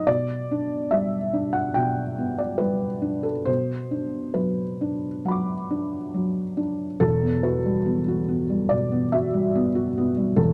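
A dry, close studio sound with a 1970s character and only a light touch of reverb frames this brief excerpt of neoclassical minimalist piano, reflective and intimate in mood with a gently rubato pulse. A single felt-muted upright piano plays alone throughout, its thick felt giving a soft, dark tone with short sustain that sits up front and spans from the deep bass to the upper treble. The harmony moves from G/B to Bm before settling on Emadd9 at 7.0 seconds as a new section begins.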